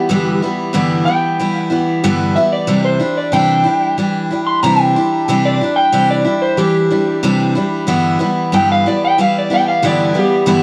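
Rock at 92 BPM in G major, this short cut from a longer piece has a jangly, warm mood and a straight 4/4 feel. A picked steel-string acoustic guitar carries the accompaniment throughout, its bright, fresh-stringed tone sitting up front and spanning from G2 to E4. Over it, an electric slide guitar takes a solo for the full 10.6 seconds, with a dark, slightly broken-up voice reaching from G4 up to C6. The slide part carries plate reverb and tape echo, while both guitars share the grain of cassette tape. The harmony moves from G6 to Cadd9 at 2.7 seconds and back to G6 at 7.9 seconds. It has the feel of a home cassette recording in a moderate studio ambience.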